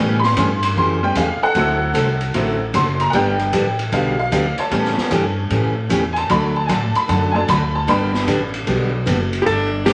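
Western swing country at a playful, swinging 152 BPM in G major, this excerpt is led by a jangly, metallic tack piano taking a honky-tonk solo up front, with bright picked acoustic guitar, a woody, thumpy upright bass and a distant, roomy drum kit with a high-tuned snare and boomy kick, until a dark, clean archtop guitar melody and a smooth, clear fiddle line enter at 9.4 seconds, all bathed in large studio reverb and vinyl crackle.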